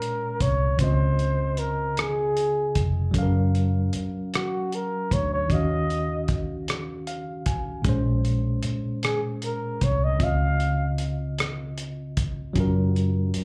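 A breathy, whispered flugelhorn carries the melody up front with dark vibrato and a soft attack, wrapped in plate reverb, slapback and tape echo, before falling silent at 11.1 s in this late-night, yearning slow six-eight R&B cut at 51 BPM. Beneath it, a worn, slightly out-of-tune tine electric piano with light overdrive moves through Bbm9, Dbmaj9, Gbmaj7 and Ebm9 and adds a fill at 6.7 s, while a round, foam-muted fingered bass enters at 0.4 s. A cloth-damped, muffled drum kit with a tight kick, hi-hat and rim click sits gritty and close, and the whole piece comes across as a live gig heard through the venue's PA with club reverb.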